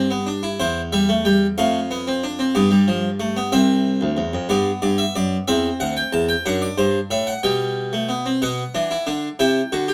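Classical baroque-style three-part fugue in a straight 6/8, elegant and joyful, played on a solo Italian-style harpsichord that sounds close, plucked and full with two sets of strings, spanning from deep bass to bright treble over a moderate studio reverb, moving through a cadence-driven opening before a brief contrasting passage begins at 8.4 seconds in this short cut from a longer piece.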